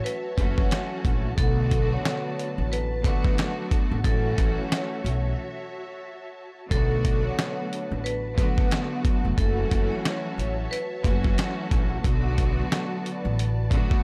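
A gritty, thumpy sampler-style drum kit sits up front in this moody, tough boom-bap hip-hop excerpt at 90 BPM, swung on the 16ths in B minor, joined at 0.4 s by a woody, growly pizzicato upright bass, while a clear, intense bowed string section carries the accompaniment through a cassette-tape haze, a second lush string section holds sustained chords in the background, and a bright, ringing hard-mallet vibraphone plays the melody with delay until 11.3 s, with a short break at 5.4 s and a small room ambience around the mix.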